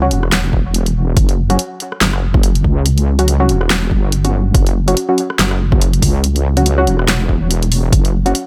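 At 142 BPM in 4/4, this deep dubstep track moves with a half-time feel and a 57% swing on the sixteenths, setting a brooding, cavernous mood. A deep house kit of hi-hat, rim click and a fat, up-front snare begins at 0.1 seconds, and a punchy, layered electronic kick drum joins at 0.5 seconds, both set in a small room ambience. Underneath, a heavy wobble bass between E1 and C#2 blends sawtooth and sine into a detuned, saturated, compressed tone with chorus and a fast attack. A muted, filtered dub chord stab sounds over an F#5 chord between F#3 and F#4, its evolving sawtooth tone shaped by a filter pluck with a short decay, chorus and dub echo. The mix carries little reverb, and the tuning sits slightly sharp at A4 = 441 Hz.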